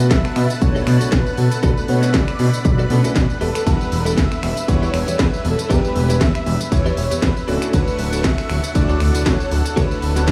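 Groovy and sensual, this nu-disco excerpt in E dorian moves at 118 BPM with a light 16th-note swing over Bm7, Em7 and Dmaj7. A fat, detuned sawtooth bass and a punchy electronic kick, entering at 0.1 s, sit up front, while a house kit adds finger snaps, crisp hats, ride cymbal, a cracking snare and tambourine. A bold, thick unison lead with vibrato carries the melody over a lush, chorused pad, a vintage grand piano in the background and a very quiet, bright clean electric guitar riff, with sidechain pumping on the bass, piano and pad in a small digital room.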